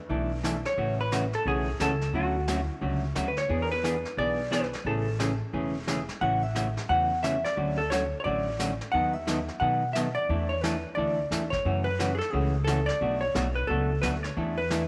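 Western swing country with a playful, down-home feel, this swung excerpt pairs a clean, picked hollow-body electric guitar carrying the up-front melody with a second hollow-body guitar comping through sixth and seventh chords, over a woody, thumpy gut-string upright bass played pizzicato and a rolled-off brush kit with a punchy kick, set in a moderate echo-chamber reverb.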